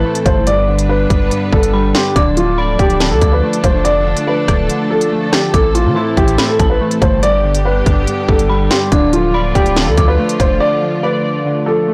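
Blown-out and overdriven with light reverb, this dark, cold half-time drill excerpt sets a muffled, intimate baby grand piano melody over warbling lo-fi synth keys, sul tasto studio strings holding sustained chords, an eerie inharmonic FM bell drifting in the background, a deep sine 808 bass and an up-front drill kit with a hard-clipped kick, crisp hats and a sharp snare, the kick dropping out from 4.7 to 5.5 seconds before a break at 10.6 seconds.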